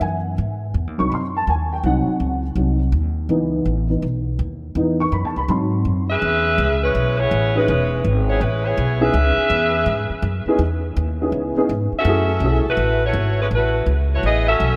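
Big band swing jazz in C# minor at 164 BPM, this dramatic, sultry fragment of a longer piece rides a swung 4/4 feel through a dreamy mix soaked in a wet plate reverb. A dark baby grand piano takes a solo in the first section, intimate and short in sustain with audible action noise, its chords carrying an ensemble chorus while moving through G#7 and C#m7. A woody upright bass, plucked on steel strings, sits up front beneath it throughout, running down to a low E1. At 6.1 seconds a mellow saxophone section enters with the melody, vintage in character with vibrato and trailed by a diffuse ambient delay, as the harmony settles on C#m7 before turning to F#m7 at 12.1 seconds. The piano drops out at 12.6 seconds, leaving the horns and bass to carry the close.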